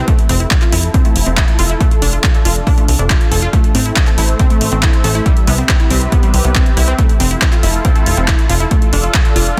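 A thick, detuned unison pad with chorus and phaser opens this driving, emotional uplifting trance excerpt at 139 BPM in a straight 4/4, joined at once by a funky, sawtooth plucky analog bass, both pumping under the sidechain while a filter sweep runs across the pad for the full 9.6 seconds. From 0.1 s a lush, detuned unison pluck spins arpeggios through a dub echo over the chords Fmaj7, Dm/F, Am and Cmaj7, tuned to A4 = 435 Hz. A layered, up-front electronic kick sits alongside a dry, overdriven analog drum machine adding handclaps and hi-hat, all set in digital ambience under a dense, heavily limited modern master.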